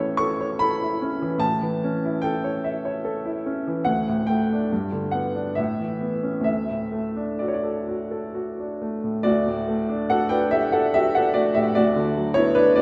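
A woody, vintage upright piano opens this serene, tender excerpt of a romantic classical nocturne in D major, moving in 3/4 with rubato at 63-76 BPM through A, D, G and Aadd9 back to D before settling on Bm/D at 11.8 s, its clear, smooth, up-front tone bathed in a wet scoring-stage reverb with a 2.0 s decay that sounds from further back in the room.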